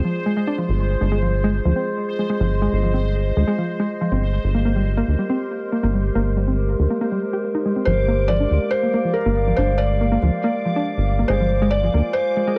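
Set to a straight 4/4 pulse, this eerie, intricate IDM passage, cut from a longer piece, opens with a warbling, nostalgic tape-like pad that holds dark sustained chords through chorus, built-in reverb and a vintage 12-bit sampler grit. Beside it, a dusty, detuned pluck spins mellow arpeggios through chorus and digital delay. Above both, a bright, bubbling texture of random filter steps hovers in the upper register with a gentle attack and long release. A rubbery, resonant acid bass enters at 0.7 seconds and sits up front, its deep sawtooth tone striking with a fast attack and decaying after each note. At 7.9 seconds the harmony settles onto Gm7, and a felt-muted upright piano takes the melody, its soft, intimate tone carrying audible action noise and a touch of tape echo, all within light reverb and a digital ambience.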